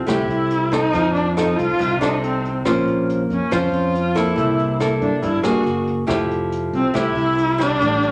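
A straight 4/4 bossa nova pulse at 140 BPM in F major carries this breezy, sophisticated excerpt, with a jazz brush drum kit tapping hi-hat, rim click and a boomy kick from the background under a bright, growly fingered electric bass. Up front, a small-sounding fingerpicked nylon-string guitar comps through chords from a rootless Fmaj9 and F7 to Bbmadd9, C6 and a Gbadd9, while a single bowed viola sings a dark, expressive melody with vibrato and portamento. The viola sits at a distance, and the whole mix sits in a wet large studio reverb.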